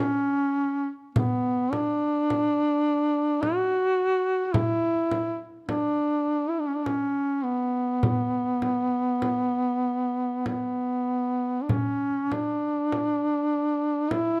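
Closely miked and finely detailed with light reverb, this mournful, solemn Caucasian folk lament in B minor moves in free rubato at 48-55 BPM in 3/4, tuned to A4 = 443 Hz. A mellow duduk sits up front, carrying the melody between B3 and F#4 with vibrato and scooped notes from 0.0 seconds, and a small, bright frame drum in a small-room sound joins at 1.2 seconds, before the piece turns to a new section at 11.7 seconds in this passage cut from a longer work.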